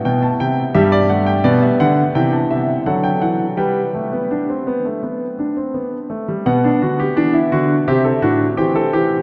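A lone concert grand piano sits up front in a vast, echoing cathedral, its warm tone and deep bass trailing into a long, wet reverb. This is a short, lively and elegant fragment of a baroque-style four-part fugue in G major, moving at a straight 85 BPM in 4/4. The piano spans G2 to A5 as it works through its voices, opening on E minor before settling into G, then passing through A minor over C and D back to G. Around 6.5 seconds the music turns to a new passage, with a rootless G over B giving way to A minor seventh. The clip ends at 9.2 seconds, clearly cut from a longer piece.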